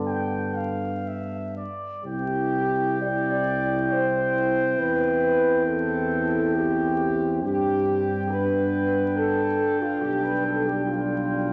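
Classical, hymn-like brass band excerpt in C major, lyrical and tender at 68 BPM in a rubato 3/4, where a mellow, distant cornet carries the melody from 0.1 seconds above an up-front, warm French horn section on the second line, with a dark, smooth-topped euphonium, a clear euphonium in the background and a close-miked tuba on the bass, all set in a wet church reverb with vinyl crackle.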